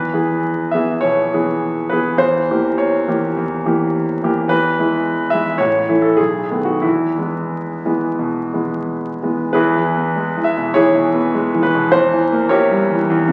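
Hopeful and warm, this brief romantic character piece for solo piano is cut from a longer work and unfolds in E major at a rubato pace that drifts between 86 and 110 BPM in 4/4. A clear concert grand carries everything alone, ranging from A1 up to E5, with a deep bass and a smooth, up-front presence. The harmony moves from E through a shadowy Edim7 and back, then passes through A and B7 to settle on E at 6.8 seconds. The opening phrase returns at 9.5 seconds, and the diminished chord reappears at 11.9 seconds just before the cut at 13.3 seconds. A wet recital hall reverb surrounds the piano, while the crackle of a very old 78 rpm record lends the sound a vintage patina.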